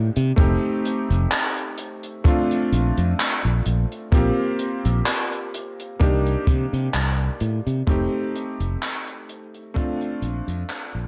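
A clear, vintage electric grand piano with lush chorus and analog delay opens this hazy, melancholic vaporwave fragment alongside a bright, growly fingered electric bass, moving through chords such as F9, Bbmaj9 and Cm7 at a slow, lightly swung pace. An acoustic jazz kit enters at 0.2 seconds with handclaps and hi-hat under gated reverb, joined by a boomy kick. The whole passage carries a cassette-tape patina and small-room ambience, and it fades out from 5.4 seconds to the end.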